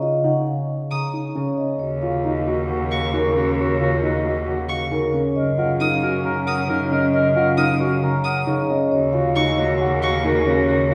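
A wet, hall-like reverb surrounds this hypnotic, bright minimalist classical excerpt in Eb minor at 135 BPM, where a ringing soft-mallet vibraphone carries the melody over thumb-plucked harp and dark piano arpeggios, a distant violin with portamento enters at 0.9 seconds, and a present clarinet second line and focused cello bass join at 1.8 seconds as the harmony moves through Ebm9 and Gb6.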